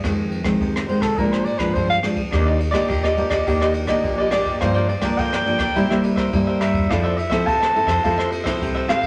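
Lively and nostalgic, this short cut from a longer samba and choro piece moves at 105 BPM in a straight 4/4, with an up-front, thumb-plucked nylon-string guitar and a woody pizzicato upright bass setting the groove alongside a brushed jazz kit with a boomy kick and dark cymbals. A breathy, whispered soprano saxophone enters at 0.9 seconds to carry an intimate solo melody with light vibrato and a soft attack, and a crisp, picked cavaquinho joins at 2.3 seconds. Moderate studio reverb surrounds the parts as the harmony travels from Fm7 through Ebmaj7 and C7 to Fmaj7.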